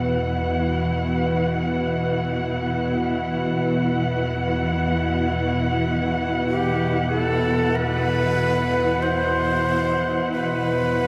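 Set in free time, this brief excerpt of dark ambient drone unfolds with an ominous, unsettling mood over a single Esus2 harmony. From the first moment, a resonant drone built from sawtooth and sine tones holds the low register between E2 and B2, its moving overtones sweeping while chorus and its own reverb blur the edges. Alongside it, a cello section sustains bowed chords from B2 up to F#5, its dark, expressive tone carrying vibrato and a soft attack, the ensemble sounding distant even while it sits up front. At 6.5 seconds a breathy, reedy shakuhachi enters with a melody confined between G4 and C5, its bright, straight tone softened by rolled-off highs and trailed by a diffuse ambient delay. The whole piece is bathed in a wet cathedral reverb with a 6.8-second decay, giving the sound a cavernous, lingering atmosphere until it is cut off at 11.1 seconds.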